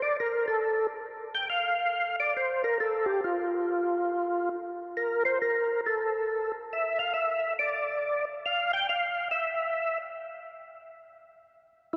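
A cavernous cathedral reverb with a long 4.8-second tail surrounds this smoky, bluesy jazz fragment, cut from a longer piece and set in a swinging 4/4. An overdriven tonewheel organ plays alone and up front from 0.0 to 12.0 seconds, its gritty, percussive tone coloured by second-harmonic percussion, chorus vibrato and a slow rotary speaker. The organ's full voice moves between E4 and G5.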